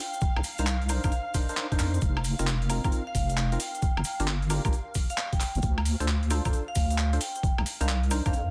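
Moody and late-night, this short cut of two-step UK garage rides a swung groove under a dense, heavily limited modern sound in a digital ambience. A gritty, overdriven electronic kick sits up front with a thumpy, pitched-down sampler character, joined by a compressed boom bap kit of handclaps, hi-hat, rim click and woodblock, while a grainy, bright cabasa ticks in the background. The deep soft wobble bass enters at 0.4 seconds, dark and saturated with chorus and sidechain pumping, and shares the foreground with the kick. A close-miked, dry vibraphone played with medium hard mallets carries the metallic, ringing melody through a digital delay, while a hollow, percussive organ stab, treated with analog chorus, cassette tape and delay, punctuates the harmony from 0.6 seconds. Behind them a silky, vintage string machine holds mellow sustained chords with phaser, ensemble chorus and pumping, drifting through Cm9, F7sus4, Gm7 and Dm7 before returning to Cm9 at 7.2 seconds.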